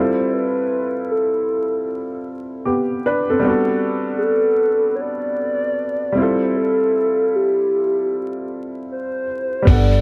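Lo-fi hip hop with a cosy, nostalgic mood and a lazy swing, taken from a longer piece. A warbly lead carries the melody from the start, its square and sawtooth tone detuned and softly attacked, with sustained notes shaded by chorus, phaser, vibrato and a low-pass filter for a mellow glow. Beneath it, a warm upright piano plays woody, slightly detuned accompaniment with a smooth, vintage character and long sustain, given a cassette-tape colour, while the harmony moves from Fmaj9 to Gmaj9 and back to Fmaj9. At 9.7 s a plucked upright bass and a sampler-style drum kit enter, the bass thumpy and acoustic and the compressed kit sounding muffled, with a thumping kick, hi-hat and crash cymbal. A small room reverb and a layer of vinyl crackle wrap the whole mix in a homely, faded atmosphere.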